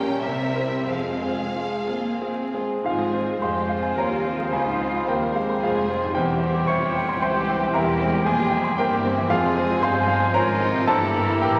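A wet scoring-stage reverb and a thin layer of vinyl crackle surround this brooding, tragic passage, a fragment cut from a romantic movement for piano and orchestra in F minor, moving in a rubato 3/4 between about 88 and 118 BPM. The concert grand sits up front with a clear, polished tone, deep bass and audible action noise, carrying the melody over a range from Bb1 to Db6. A lush, rich violin section shares that melody with expressive vibrato, while a second, very quiet violin section sits distant beneath it, and close violas, smooth cellos and background double basses fill the accompaniment and bass with bowed, vibrato-laden warmth. At 2.8 seconds the winds arrive: a clear, roomy solo clarinet enters first, and a moment later an airy flute ensemble in the background and a punchy, distant oboe add further second lines, while a tight French horn section holds very quiet sustained chords. 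Harmonies pass from C7 to F minor, through Dbmaj7 and C/E, and close on an Edim/G.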